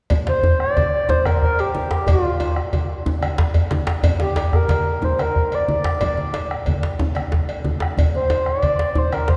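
West African traditional drum ensemble music in a driving, festive 12/8 at 122 BPM, this short excerpt from a longer piece sets a round bombo, bright low-tuned congas, a metallic cowbell and two djembes, one dry and soft-handed in the background, the other tight, cracking and saturated, beneath a reedy, woody FM lead. The lead sits up front with a soft attack and sustained tones between F4 and D5 in Bb major pentatonic, colored by chorus, tremolo and vibrato. A wet church reverb with a 3.5-second tail fills out the space around the ensemble.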